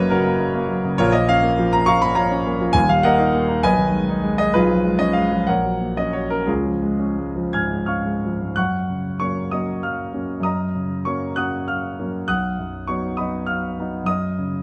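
Lyrical and hopeful, this romantic character piece for solo grand piano moves in 6/8 at about 56-69 BPM, counted in dotted quarters, with a flexible rubato feel. The piano sits up front with a warm, natural tone, spanning deep bass to high treble as the harmony travels from F# through minor chords and a C#7 before a new passage begins at 8.6 s and settles on a bare F#5 at 14.1 s. A moderate stone-room reverb and a dark production give this short excerpt an intimate glow.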